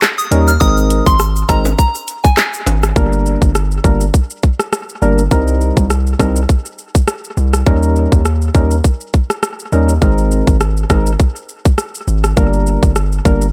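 Bouncy and sultry, this dancehall excerpt at 102 BPM with a swung 16th feel rides an up-front electronic drum kit of tight kick, dark hi-hats, handclaps, rim clicks and shaker, alongside a punchy, heavy 808-style bass and a hollow, percussive organ stab with chorus, while a pure, gentle FM synth bell treated with chorus, phaser and dub echo sings briefly from 0.2 to 2.3 seconds and bright, close egg shaker and timbales with dub echo sit in the background until 2.9 seconds, before the dry, echo-heavy groove settles at 3.0 seconds into a Gm, Cm7, Eb7, Abadd9 cycle.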